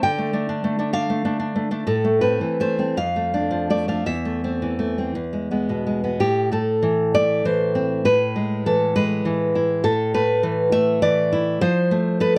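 In a rubato 6/8 lilt of roughly 52-69 BPM on the dotted quarter, this wistful, melancholic romantic excerpt in A minor features a solo nylon-string guitar, fingerpicked up front with a full-bodied, fresh-stringed classical tone, audible finger squeak and a slapback echo in light reverb, ranging from E2 to G5 as its opening passage gives way to a second section at 6.2 seconds.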